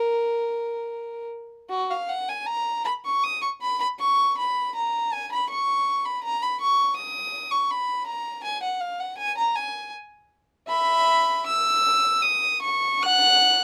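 In a flexible, rubato 3/4 at 80 BPM, this serene, dance-like fragment of a baroque-style suite movement for unaccompanied violin features a single bowed, up-front player in period style, tuned to A4 = 442 Hz, whose reedy gut-string tone and light vibrato span F#4 to F#6 in light reverb, with a brief opening phrase giving way at 1.7 s to a longer passage that runs to 13.6 s.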